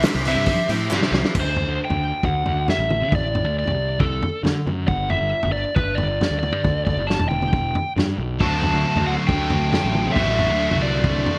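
A biting, overdriven lead guitar carries the melody from the start of this indie rock clip in D mixolydian at 136 BPM, over a growly, punchy fuzz bass and a muffled, lo-fi vintage drum kit with a tight kick, while a crisp, distant group handclap sounds briefly and a drum fill leads into the main section at 1.4 seconds. A raw garage guitar with lush chorus and a thick, dark fuzz guitar with ensemble chorus and digital delay play riffs at the opening, drop out, and return at 8.4 seconds. The mood is wistful yet carefree, set in light reverb with a bright 1980s-style digital production sheen.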